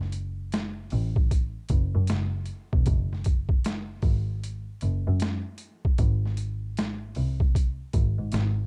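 Introspective and smooth, this short neo-soul and R&B cut moves at 77 BPM with a swung sixteenth-note feel, dark production and little reverb. A sampler-style boom bap kit sits up front with a thumpy kick, high-tuned snare and hi-hat, its compressed, pitched-down sound made gritty by overdrive. A single bowed double bass, close and intense, carries the low end from E1 to G#2 with vibrato, an airy bow and a biting edge.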